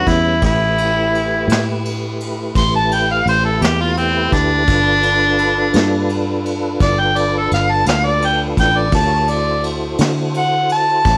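In a straight 12/8 feel, this slow blues has a rollicking, swaggering mood and is cut from a longer piece. A mellow harmonica takes the solo up front, its jazz-style line full of scooped notes and light vibrato, roughened by overdrive and doubled by a slapback echo in a roomy space. Beneath it a tonewheel organ holds clean, dark sustained chords through a slow rotary speaker and chorus vibrato. A fingered electric bass sits close and round, foam-muted, while a vintage kit played with brushes comes in at 0.1 s from a distant small room, with a tight kick, a medium-tuned snare, ride cymbal and a rolled-off top. The harmony moves from A7 to G7 at 4.7 seconds and on to D7 at 8.9 seconds.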